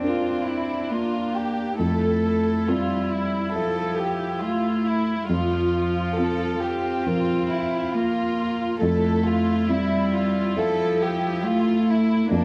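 Hopeful and tender, this fragment of a neoclassical piece for piano and strings drifts at a rubato 69 BPM in F major, with a chamber violin section carrying the melody in soft, sul tasto bowing with light vibrato while a rich, floating solo cello sings a second line beneath, a lone viola adds airy-bowed accompaniment, and a felt-muted upright piano with a boxy, intimate tone supports chords moving from Bb/F through Fmaj7 and C7sus4/F back to Fmaj7, all set in a moderate recital-hall reverb with a dark, warm production.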